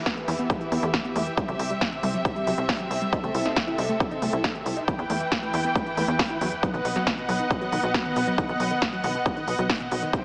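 Up front, a clear, lush symphonic string section holds smooth, vibrato-rich chords that pump with the sidechain through this euphoric, driving uplifting trance excerpt at 137 BPM, moving through Em, C, Am/C and back to Em before landing on B. Behind it, a nasal, detuned sequenced synth plays tight arpeggios with chorus and dub echo under a filter sweep, while a punchy sawtooth-and-square sequencer bass pumps from 0.3 seconds. A punchy, tape-toned electronic kick sits up front beside a layered dance kit of crisp hats and snare re-recorded in a large room, all heard through light reverb with a small-speaker character.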